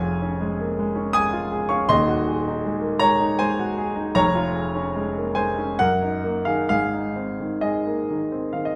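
Heard through a wet recital hall reverb, this lyrical and passionate romantic character piece for solo piano moves in a rubato 3/4 at 64-82 BPM in Db major, its grand piano warm, natural and up front with a short sustain, ranging from Eb1 to Eb6 over an 8.8-second passage cut from a longer work.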